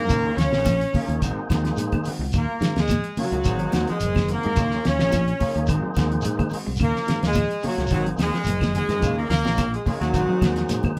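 A straight 108 BPM afrobeat groove in Eb dorian, defiant and funky, alternates between Ebm9 and Ab7 as a cloth-damped, thuddy drum kit with a fat snare and tight kick sits up front and a fingered electric bass holds the low end, while a punchy, octave-doubled horn section carries the melody over a raspy, gritty tenor saxophone second line, a fat tonewheel organ with key click and slow rotary speaker, dark semi-hollow guitar arpeggios, clean mellow guitar stabs, and background claves, grainy shekere and bright, high-tuned congas entering at 0.7 seconds, all in a lightly reverberant room where the band plays live in this cut from a longer piece.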